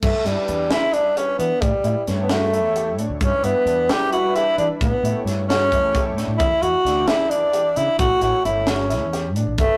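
Set in a straight 7/8 at 264 BPM counted in eighths, this bright, intricate progressive instrumental excerpt rides on a tight funk drum kit with a high-tuned snare, hi-hat, crash and tight kick, under a dark, round fretless electric bass, as the harmony shifts between G6 and A7 before touching Em7. Up front, a tenor saxophone carries the melody with classical-style vibrato, while a grand piano plays intimate arpeggios in the background, its action noise audible. A silky, sawtooth analog string pad with ensemble chorus swells in slowly behind them, and the whole band sits in a small room with a rough, tube-saturated rehearsal-room character.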